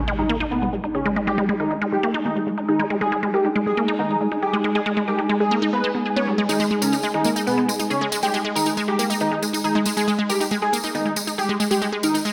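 A straight 4/4 pulse drives this intense psychedelic trance excerpt, which opens on an electronic impact while a punchy, bright unison pluck riff with delay sits up front beside a thick, nasal unison lead melody coloured by phaser and digital delay. Beneath them, a nostalgic, lo-fi tape-like pad with chorus adds texture, and from 0.8 s a swarming, tense drone with granular movement and gritty vintage 12-bit sampler character holds sustained chords in the background, inside a moderate digital room. A jingly, close and dry tambourine joins at 6.5 s.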